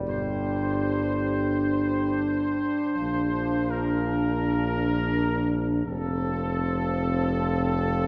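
A mellow, up-front tuba and a clear, present trombone section open this majestic classical brass passage in free time, joined at 0.1 seconds by a dark, distant French horn section holding sustained chords and a bright trumpet section carrying the melody with light vibrato. The harmony moves from Gsus4 to Bb at 3.0 seconds and settles on F at 5.9 seconds, giving the short, regal excerpt a stately sense of arrival. A long church reverb wraps the ensemble in a dark, warm production.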